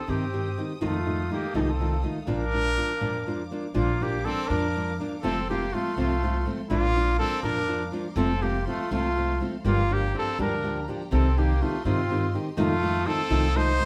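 A trumpet with a mellow, classical tone carries the melody up front in this festive, proud mariachi passage, cut from a longer piece and set in 6/8. Behind it, a second trumpet with a clear, vibrato-laden sound plays a lower supporting line from further back. A fingerpicked nylon-string guitar provides close, classical-style accompaniment, with finger squeaks audible. A pizzicato upright bass with a woody, steel-string sound anchors the low end, and a lush, bowed symphonic violin section holds smooth sustained chords high above. The same passage is heard twice, the second time from 3.8 seconds, moving through chords such as Cm, F7, Bb and Gm7, all heard from a little further back in a small, reverberant room.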